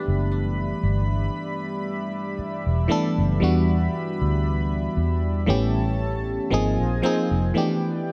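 A slow 58 BPM groove in 4/4 with lightly swung sixteenths carries this moody, longing contemporary R&B fragment, cut from a longer piece, as it moves through G6, Em7, A7 and G#6 before settling back on G6. Up front, a glassy, bell-like FM electric piano with chorus plays the accompaniment, while a round, foam-muted vintage electric bass enters at 0.1 seconds and drops out at 7.5 seconds. Behind them, a shimmering, detuned pulse-width pad sustains chords, and a woody koto played with fingerpicks adds quiet texture through a digital delay, all framed by light reverb and a dark production.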